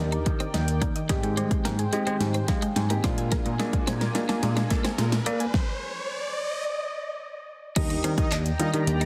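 Summery and euphoric, this dance-pop fragment in a straight four builds toward a drop, with every part pulsing under sidechain pumping except the guitar, the drums, the riser and the supersaw. Up front, a punchy, overdriven pop drum kit with a fat snare, metallic hats, handclaps and crash plays a fill through the first 5.5 seconds, beside a bright, bell-like tine electric piano carrying the bass. Further back sit a dark, mellow grand piano with a brief fill, an evolving, full-bodied pad with chorus, a woody, percussive FM pluck whose arpeggios run through chorus and digital delay, and a clean, picked twelve-string electric guitar riff with analog chorus. An electronic riser climbs in at 2.7 seconds as the harmony moves from Ebmaj7 through Abmaj7 to Bb7, then the chords stop and the build hangs in suspense. At 7.8 seconds the drop lands back on Ebmaj7, and an airy, smooth supersaw melody with digital delay appears briefly. 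The mix has light reverb and digital ambience, pressed into a heavily compressed radio sound.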